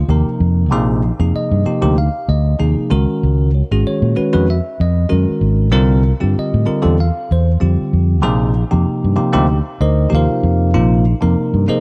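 Driving and intense, this short electric jazz fusion passage, cut from a longer piece, rides a light sixteenth-note swing in 4/4. A fingered electric bass sits prominently in the mix with a punchy, amped tone, holding down the low end from the opening moment to about 11.7 seconds. Alongside it, a bell-like tine electric piano supplies clean, direct accompaniment colored by a phaser, ranging from its lower middle register up into its upper reaches. The harmony moves through suspended colors, from Bb13sus4 to Dbsus4 and C9sus4 before returning to Bb13sus4 at 8.2 seconds. A small room ambience surrounds the pair, with both parts sounding bright and up front.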